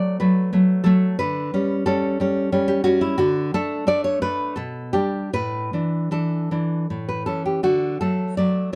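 This romantic solo classical guitar piece is sunny and tender, moving in a flexible rubato around 76-92 BPM in 3/4 and settling in D major. A fingerpicked nylon-string guitar sits up front with a deep classical tone, and finger squeaks show through as it spans A2 to D5 over chords that pass from D through G/B and Asus4 before resolving to D at 7.6 seconds. Moderate studio reverb and a dark production frame this 8.8-second cut from a longer piece.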